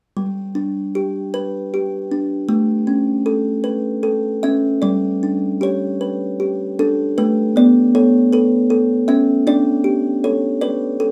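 A solo kalimba, plucked with the thumb on a solid woody board, rings tender and up front in a boxy small room, drifting in a gentle rubato 6/8 lullaby through G and Aadd9 chords before settling on Dsus4 at 9.5 seconds in this short cut from a longer children's piece.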